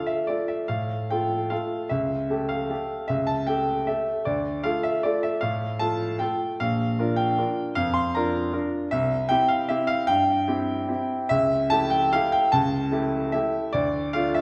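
Wistful and nostalgic, this classical piano waltz in triple time moves with uneven beats and a supple rubato, drawn from a longer piece. A solo grand piano, clear and open with long sustain, sits up front and ranges from deep bass to high treble over a chord progression that keeps circling back to its minor home. The recital hall's wet reverb lingers around every note, lending the playing the spacious resonance of a church or concert hall.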